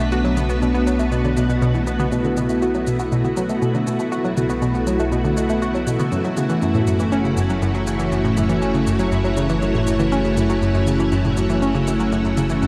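A steady, straight pulse in four sets the pace, with an electronic shaker and toms coming in at 0.1 s, their tape-warm analog tone sitting low in the mix and trailed by delay. This is hypnotic, cosmic, sequencer-driven space music, heard as a short cut from a longer piece. An up-front analog pluck carries the riff, its bright, detuned, wave-folded voice shaped by a filter sweep and wrapped in chorus, delay and shimmer reverb. Alongside it, an equally up-front full-ensemble string machine holds lush, vintage sustained chords with a slow attack, thickened by ensemble chorus and shimmer. A deep, dark analog bass with tube saturation anchors the low end. The harmony moves from Bm7 to F#m7 at 6.1 s, and a cathedral-like reverb with a long tail places everything in a vast, echoing space.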